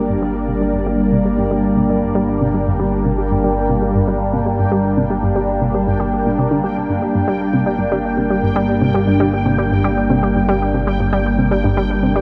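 This excerpt of cosmic, mysterious space music opens with a lush, airy unison pad holding sustained chords up front, its detuned sawtooth voices treated with chorus and phaser, while a round, nasal analog pluck repeats a riff beneath through chorus, cassette tape and delay. A fat, saturated analog bass sits low on a single note, and high above a bubbling texture of random resonant filter steps drifts through chorus and its own reverb. The entire excerpt bathes in a huge ambient reverb with a 7.5 s decay, and a filter sweep runs over the synth arpeggio sound across the full 12.2 seconds.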